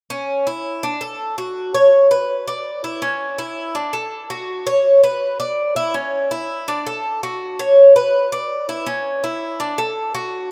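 Warm and relaxed, this short latin excerpt at 164 BPM in a straight 4/4 features a solo acoustic Cuban tres, bright and metallic with its picked double strings and some octave-doubled courses, sitting up front from 0.1 to 10.5 seconds between C#4 and D5, bathed in a wet plate reverb within a rough home demo mix.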